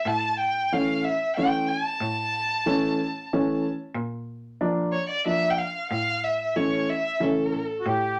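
A smooth bowed violin with rich vibrato opens this bittersweet, festive klezmer excerpt at 92 BPM in 3/4 and A phrygian dominant, carrying the melody over a biting bowed cello bass, while a woody upright piano with long sustain enters at 0.7 s and the harmony moves from A to Bb and back within a reverberant studio room, until a reedy accordion with light tremolo tuning adds a sweet second line at 7.8 s.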